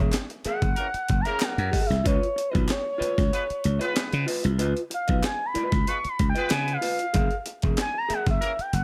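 An expressive synth lead takes a solo across this strutting funk excerpt, entering at 0.5 s with a smooth, sustained sawtooth tone, colored by chorus and vibrato and placed up front. The groove moves at 94 BPM in a straight 4/4, in Db mixolydian with A4 tuned to 444 Hz, and is built on Gb9 and Db9 chords. A growly, punchy slap bass and a gritty, compressed breakbeat kit, with a thumpy kick, medium-tuned snare and hi-hat, drive the rhythm from the opening. Beneath them, a dark, clean hollow-body jazz guitar plays picked accompaniment. A clear horn section with light vibrato and octave doubling adds a second line from 0.8 s, while a very quiet, crisp group handclap sits in the background and digital ambience frames the sound.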